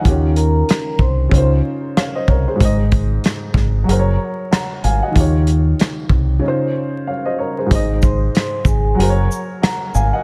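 Vinyl crackle and a light studio reverb frame this nostalgic, confident boom-bap hip-hop excerpt at 94 BPM in Ab major, swung on the sixteenths over a cycle of Eb7, Dbmaj7, Ab and Gbadd9 chords, with a break at 6.4 seconds. A tight soul drum kit with a rolled-off top plays hi-hat, kick, rim click, shaker and snare alongside a round, punchy fingered electric bass, while a dark, woody upright piano with audible action noise and a cassette-tape tint supplies the chords. A mellow vibraphone with soft mallets and slow motor vibrato rings through delay in two short phrases, at 0.4 and 8.0 seconds.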